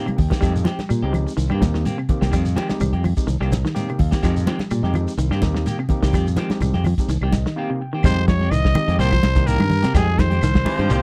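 A bright, up-front fingered electric bass drives this intense, defiant afrobeat excerpt in F minor at 126 BPM, over a dark soul drum kit with a tight kick, soft-handed congas, a grainy shekere and woody claves, with a barky overdriven tine electric piano and two clean semi-hollow electric guitars, one playing stabs and the other arpeggios, circling Fm9 and Cm7 until a raspy, growling trumpet takes the melody at 8.1 seconds and a forceful baritone saxophone adds a second line at 10.7 seconds, all in a dry, close 1970s-style studio sound.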